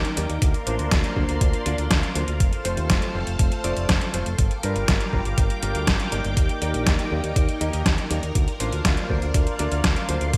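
A lush string machine, a fingered electric bass and a detuned 8-bit drum machine open this nostalgic, danceable italo disco fragment, cut from a longer piece. The vintage sawtooth strings hold sustained, mellow chords with a slow attack, a sub octave and ensemble chorus, while the bass runs low through an envelope filter with tube saturation. Up front, the drum machine's hi-hat and medium-tuned snare carry gated reverb and a tape-softened, roomy character. An electric grand piano enters at 0.2 seconds with clangy stabs washed in lush chorus and delay, and a thumpy electronic kick joins at 0.4 seconds to anchor the beat. Over a Bbadd9, F, Gm7, Ebmaj7 progression, the bright digital production and light reverb give the whole a glossy 1980s sheen.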